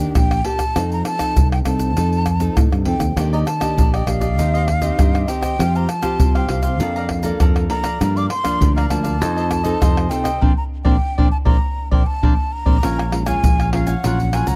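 Joyful and lively, this samba-choro passage at 99 BPM in Bb major sets a breathy, tongued concert flute melody with expressive vibrato over fingerpicked nylon-string guitar with audible finger squeak, a round, punchy fingered electric bass and up-front egg shaker, tight surdo, pandeiro and tamborim, while a mellow, crisp picked cavaquinho joins at 3.2 seconds, a band accent arrives at 10.4 seconds, and a drum fill leads into a new section at 12.8 seconds, all in a dry, close 1970s-style studio sound.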